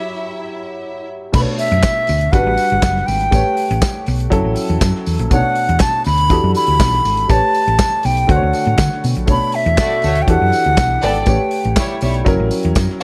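A short break of intimate concert grand piano and lush bowed violins opens this driving, danceable disco cut in B minor at 121 BPM, moving over an F#7 chord before the full groove arrives at 1.3 seconds. There an airy alto flute with tape echo carries the melody up front, while a round, punchy hollow-body electric bass and a tight, acoustic soul drum kit with handclaps, hi-hat and crash cymbal drive the beat, with a jingly vintage tambourine in the background. Rich seventh, ninth and eleventh chords such as Bm9, Em11 and A9 cycle beneath, and the smooth violin section returns at 9.8 seconds, all captured in a dry, close studio sound.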